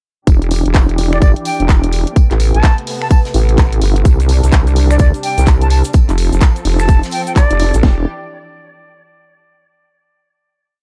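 A small room ambience surrounds this gritty, aggressive bass house track at 127 BPM in E phrygian, swung on the sixteenths and built almost entirely as a drop that ends on a held final Em7 at 7.8 seconds. Up front, a tape-warm garage kit drives a four-on-the-floor kick with a cracking snare, beneath programmed closed and open hats, claps and finger snaps, while a very quiet acoustic kit adds a looped, edited breakbeat of hi-hat, snare and tambourine. The nasal, resonant vowel-sweep wobble bass dominates the low end, its formant-filtered, chorused, tube-driven phrases changing wobble speed and pumping against the kick. Behind it, a lush symphonic string section holds smooth bowed chords through Em7, Amadd9, Csus2 and F, low-pass filtered and pumping too. From 1.1 seconds a bright, reedy, airy jazz flute plays short phrases with vibrato, roughened by 12-bit sampler grit and trailed by delay, and from 4.1 seconds a grainy cabasa adds hand-played sixteenths in the background.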